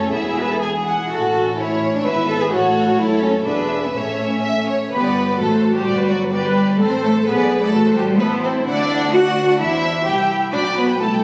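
Spirited and cheerful, this quick classical-period movement for string orchestra at 128 BPM in 2/4 sets a pure, floating violin melody over a second violin line, dark violas and double basses, and up-front warm cellos, all bowed sul tasto on a scoring stage with moderate reverb heard as if recorded on a phone in the room with club reverb and compression, shifting from A major to G major at 4.9 s.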